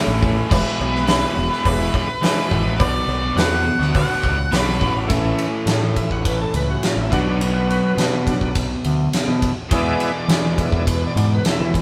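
A live-in-one-room recording with moderate studio reverb and faint mains hum opens on a swaggering, brooding classic rock excerpt in B dorian at 104 BPM, driven by a crunchy, double-tracked overdriven guitar riff, a growling overdriven bass and a big rock drum kit with a fat snare and punchy kick up front. For the first 5 seconds a bright, woody upright piano sits in the background beneath a dark octave-fuzz lead guitar melody and a very quiet metallic cowbell, over chords moving from A to E to Bm. At 5.1 seconds a shouting tonewheel organ takes a solo with key click, chorus vibrato and slow rotary speaker as the harmony moves through A, Bm and E.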